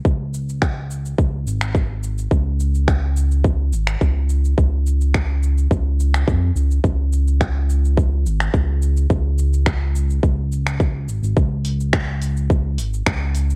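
A straight 4/4 pulse at 106 BPM drives this peaceful, warm passage of organic downtempo, anchored by a tight electronic kick that sits up front and carries the sound of a large room. Beneath it, a layered deep house kit of cabasa, finger snaps and hi-hat plays at a lower level, tape-softened and set in a smaller room. A smooth synth bass, dark and sustained with a fast attack, moves between Ab1 and F2, blending sawtooth and square waves with a ring-modulated edge and pumping under sidechain compression. The recording has little reverb and a worn cassette character, with warbly pitch drift from old tape. A new section begins at 11.4 seconds, and the kick drops out at 13.2 seconds, leaving bass and kit to carry the passage to its cut at 13.6 seconds.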